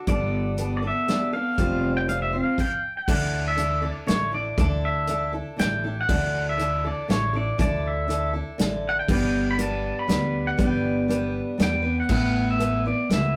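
Folk rock with a heartland rock lean, this nostalgic, jangly fragment of a longer piece moves at 120 BPM in a straight 3/4, drifting from Gadd9 and Fsus2 into a Dsus2 passage at 3.1 seconds before settling on G and then Asus2. A full-bodied dreadnought steel-string acoustic guitar, picked up front with audible finger squeak, carries the accompaniment. Above it, a clean, compressed pedal steel sings the high melody with fingerpicks, slide and volume swells, while a woody, thumpy pizzicato upright bass on gut strings and a natural country kit with a punchy kick, medium-tuned snare, hi-hat and crash fill out the bottom, all in a rough rehearsal-room recording with a wet small-room reverb and warm saturation.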